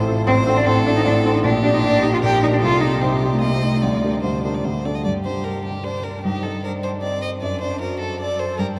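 A polished grand piano, up front and warm, leads the ear in this quick, restless classical-period movement for piano trio in triple time. The piano carries the accompaniment across a broad range and is the most present voice. A focused, vibrato-laden solo violin plays the melody in a fairly narrow upper register, sitting a little further back in the mix. The cello joins at 0.3 s with a smooth, even second line, its rich bowed tone heard at a distance. The trio is set in a vast, echoing cathedral-like space whose long, wet reverb lends the urgent writing a haunting grandeur. This is a short excerpt cut from a longer piece, with a shift into a new section at 5.1 s.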